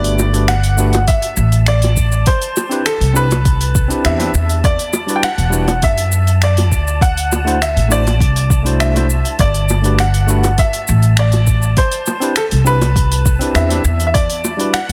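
A woody, pizzicato upright bass with tube saturation sits up front in this smooth, relaxed sunset chillout excerpt in G major at 101 BPM, moving through Gmaj7, Cmaj7, Em7 and D7 chords. A bright, worn grand piano with short sustain carries the melody over a barky, gritty overdriven tine electric piano through a combo amp, both touched with digital delay. A layered deep house kit of finger snaps, smooth hi-hat and shaker plays from the start, round, low-tuned bongos follow just after, and an overdriven soft electronic kick joins them at 1.1 seconds. An airy, breathy wind-like noise texture drifts darkly in the background from 0.9 seconds, and the dense, heavily limited master carries light reverb.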